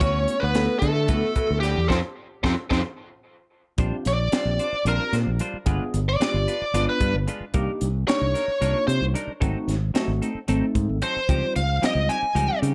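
Funky and bright, this electric jazz fusion clip moves in a straight-feel 7/8, cut from a longer piece. A biting, overdriven lead guitar carries the melody, while a breathy tenor saxophone with scooped notes and vibrato adds a second line only until 2.8 seconds. Beneath them, a tine electric piano comps through a combo amp with medium tremolo and phaser, and a compressed semi-hollow guitar with analog chorus supplies clean stabs. A round, dark fingered bass sits up front, and a crisp kit with a high-tuned snare and punchy kick pumps in a small room. The band hits an accent from 1.9 seconds and the drums fill into 3.8 seconds, where the lead guitar launches a solo over lush extended chords under light reverb.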